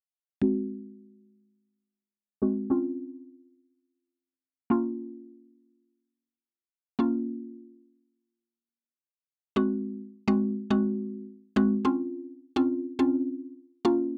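In a steady, straight 4/4 pulse, this short pop excerpt moves with a confident, driving feel. The only part is a mallet-like synth pluck playing accompaniment from 0.4 to 14.2 seconds, sitting up front in a mid register. Its tone is woody and round, with a fast, percussive attack that decays, an FM character and a noise layer. Chorus and phaser give it a shimmering motion, while a low-pass filter keeps it mellow. The harmony cycles through Ab7, Dbmaj7 and Bbm, then returns to Ab7 and Dbmaj7 when a new section begins at 9.6 seconds. The sound is dry and close, like a 1970s studio recording, with only a light touch of reverb.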